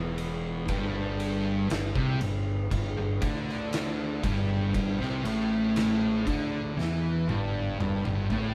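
A heavy, brooding stoner and doom metal excerpt with a moderate studio ambience, played live in one room at a crawling 59 BPM in straight 4/4. Two dark, distorted fuzz guitars carry the riff over E5 and G5 power chords, one sitting in the background from the start and the other up front from 0.7 s, while a growly, overdriven fingered bass rumbles underneath. An oversized low-tuned acoustic kit in a bright stone room brings a punchy kick, fat snare, dark cymbals and toms with a pumping, gritty saturation, closing on a drum fill from 6.8 s.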